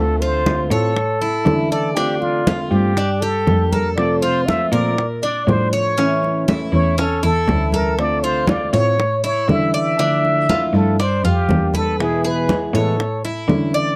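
A plunger-muted trumpet opens this danceable, nostalgic Cuban son and guajira excerpt in D minor at 120 BPM, playing an up-front, jazz-style solo melody full of wah-wah, scooped notes and light vibrato over fingerpicked classical nylon-string guitar and a rich, bowed cello bass with vibrato, before a bright, metallic tres picking double-strung arpeggios, round low-tuned bongos struck with hard hands in the background, and ringing congas under soft hands all enter at 0.2 seconds, captured in a dry, close 1970s-style studio sound with light reverb.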